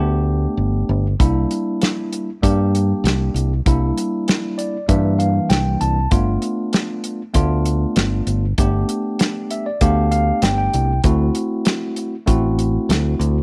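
A laid-back, swaggering straight-eighth soul blues in G mixolydian at 97 BPM, this excerpt pairs a bright, clean tine electric piano played through its built-in speakers with a dark, round fingered electric bass, both up front from the start. A dry, tight-kicked soul drum kit with a medium-tuned snare joins at 1.2 seconds as the harmony moves from G through C7, G7 and D7. The electric piano adds fills around 4.3 and 9.2 seconds, all set in a small room ambience.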